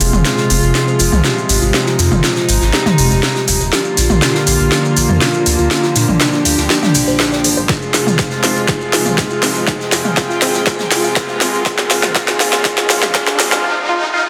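A cracking, up-front techno drum kit with soft clipping on its snare drives this hypnotic, dramatic melodic techno build-up at 121 BPM in F dorian, backed by a faint, airy acoustic kit played with bundle sticks, distant grainy maracas and a deep, dark analog bass that pumps under the sidechain. A soft, round octave-layered synth lead with chorus, tremolo and dub echo sings over gut-string chamber strings behind a low-pass filter, bold brassy pad stabs with delay and a filter sweep, and very quiet, warbling lo-fi pluck arpeggios, all moving through Fm, Bb and Ebsus2. A punchy electronic kick joins at 7.7 s and a background riser climbs from 10.6 s, all bathed in a lush hall reverb within a dense, heavily limited master.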